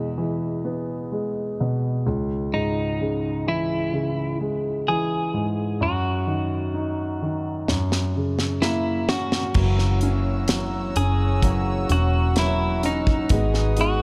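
A present, polished grand piano opens this hopeful, heartfelt pop ballad at a slow 64 BPM in 4/4, its short-sustained chords moving from E to C#m. At 2.5 seconds a clean, compressed electric guitar enters up front with a picked melody in a narrow upper-middle range. The studio drum kit arrives at 7.7 seconds with a fill, its punchy kick, medium-tuned snare, hi-hat and crash carrying a rolled-off top, as the harmony reaches F#. Near 9.6 seconds the arrangement fills out: a fingerpicked steel-string acoustic guitar adds delayed arpeggios in the background, a round, foam-muted vintage electric bass sits low and forward, and a dark chamber string section holds bowed chords with a nasal, reedy gut-string tone. Light reverb and a dark, warm production wrap this excerpt, which is cut from a longer piece and closes on a G#m7 chord.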